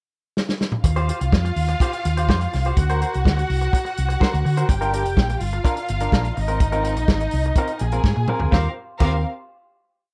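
Celebratory and joyful, this short disco piece runs at 125 BPM in a straight 4/4, opening with a drum fill at 0.4 seconds that leads into the groove. The soul drum kit sits up front with a tight kick driving a four-on-the-floor beat under sixteenth-note hi-hats, a medium-tuned snare, toms and crash cymbal, all heard in a roomy, distant space. A round, hollow-body electric bass, dark and amped, carries a syncopated disco line, while a clean, twangy electric guitar with spring reverb plays choppy sixteenth-note figures that sound bright and compressed. Above them, a woody studio string section with vibrato bows lush, long high lines from a distance. The harmony moves through Eb69, D7b13, Gm7 and Ab69, and after a second drum fill at 8.0 seconds the band settles on a final Eb69 chord at 8.5 seconds.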